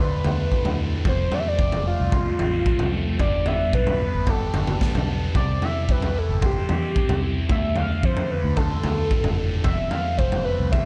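Psychedelic rock with a hypnotic, mysterious mood, this short excerpt cut from a longer piece moves at a steady mid-tempo in a straight four, cycling through Dm, F, G and C before returning to Dm and F. A screaming, guitar-like synth lead carries the melody from F4 to F5, its sawtooth and pulse tones roughened by ring modulation and saturation, with vibrato, chorus and a dub echo trailing its sustained notes. Beneath it, a thick, bright fuzz guitar plays a double-tracked, picked riff spanning D2 to C5, colored by phaser and its own dub echo. A round, dark fingered bass sits in the background, foam-muted and low between F1 and F2. The raw garage drum kit enters at 0.2 seconds, up front and pumping in a small room, with a punchy kick, medium-tuned snare and toms sounding gritty under a rolled-off top, while the small room ambience and echo-heavy mix wrap the whole track.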